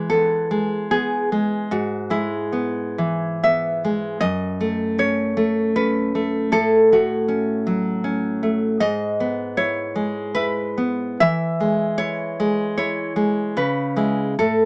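A lone nylon-string guitar opens on an E major chord, setting a tender, romantic mood in 3/4 with a flexible, rubato pulse between 63 and 79 BPM. Fingerpicked and full-bodied, the guitar sits up front with a warm, deep classical tone, ranging from F#2 up to E5. The harmony moves from E through E/G# to F#m and F#m/A, then returns by way of E/G# to E before turning to C#m at 13.6 seconds. Tuned to A4 = 442 Hz, the playing carries a light reverb, and the overall sound has the quality of a small speaker. Lasting 14.7 seconds, this passage is cut from a longer piece.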